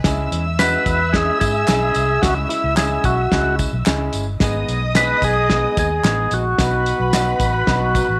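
A small-room, lightly reverberant sound frames this passionate, urgent slice of uptempo 1960s-style soul, cut from a longer piece, where an up-front percussive tonewheel organ with key click and slow rotary speaker carries the melody from 0.6 s over a woody upright piano, a round, foam-muted vintage electric bass and a cloth-damped drum kit with a fat snare and tight kick. Veiled, con sordino studio strings sit distant and lush behind them, while tambourine, egg shaker and group handclaps stay in the background. Over a band accent at 6.6 s, a clear, very quiet horn section with light vibrato slips in at 7.7 s.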